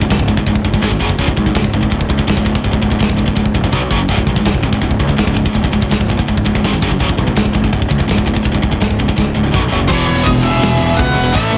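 A straight 4/4 pulse at 165 BPM drives this epic, aggressive heavy metal passage in C# minor, led by an up-front drum kit with a gritty, saturated punch, bright cymbals and short fills, while a growly fuzz bass pushes beneath two picked, distorted rhythm guitars set back in the mix. At 9.9 seconds the drums drop into half time as a cranked, double-tracked stack guitar joins the riff, a smooth overdriven lead carries the melody through tape echo, and a high-gain lead guitar traces a second line behind it. It all sits in a small room whose top end stops at 10.5 kHz.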